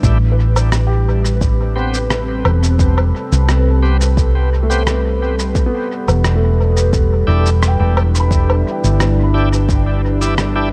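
Ambient dub with a hazy, spacious mood, moving at a straight, unhurried pace in four and cut from a longer piece. A deep, moody pad built from detuned sawtooth and sine layers with a sub octave holds sustained chords throughout, its slow attack, moving notch, chorus and reverb giving it a dark, enveloping haze as the harmony shifts from Am9 to Em7 at 5.6 seconds. Up front sits a round, hollow-body electric bass, amped and dark, beside a layered electronic kick with a tape-warm depth that drops out at 9.8 seconds. Pitched-down, muffled shaker, woodblock and rim click add compressed, sampler-style texture through dub echo. A felt-muted upright piano plays soft, intimate arpeggios in the background with audible action noise and tape echo, while from 1.8 seconds a bright tonewheel organ adds shouting stabs, lightly overdriven and gritty, spun through a slow rotary speaker and dub echo.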